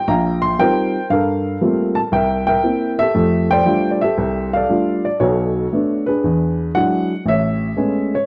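Solo jazz in a playful, swinging mood, this brief excerpt features a dark, woody upright piano played up front with a slapback echo, moving through rich extended chords in the close, dry intimacy of a small 1970s-style studio room.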